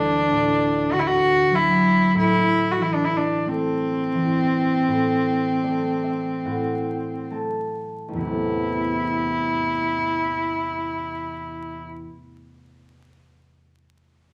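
Haunting and full of longing, this Celtic slow air in A dorian drifts in a free, rubato 4/4 at 34 to 53 BPM, slowing through its opening 8.2 seconds as the chords move from D to Am and then settle on Amadd9, in an excerpt cut from a longer piece. A single bowed cello carries the melody up front with a nasal, reedy gut-string tone, light vibrato and a period-style voice, while a concert harp accompanies with thumb-plucked, ringing notes across its range and adds a fill from 4.9 seconds. Soaked in wet studio reverb and overlaid with vinyl crackle, the cello falls silent at 11.8 seconds as the harp rings on a moment longer.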